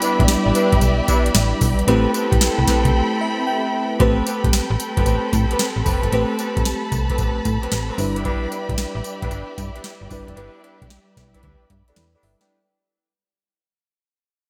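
A bright 1980s-style digital production in a moderately lush hall, this short cut from a longer R&B piece rides a punchy, bouncy new jack swing groove at 113 BPM in A minor, with a sixteenth-note swing. A booming analog drum machine sits up front with a deep kick, crisp snare, metallic hi-hats and tambourine, while a snappy, slap-like FM bass with a metallic attack enters at 0.2 seconds. An FM electric piano layered with a soft pad carries the accompaniment, its dreamy, detuned tone shimmering with chorus, and the piano steps forward with a fill during a break from 2.9 to 4.0 seconds. A studio string section holds sustained chords with vibrato and portamento, and a mellow, jazz-style horn section punctuates with octave-doubled stabs trailed by digital delay. The harmony moves from Em7 to Am9 and later to Em7/G, and from 4.0 seconds the whole piece fades out.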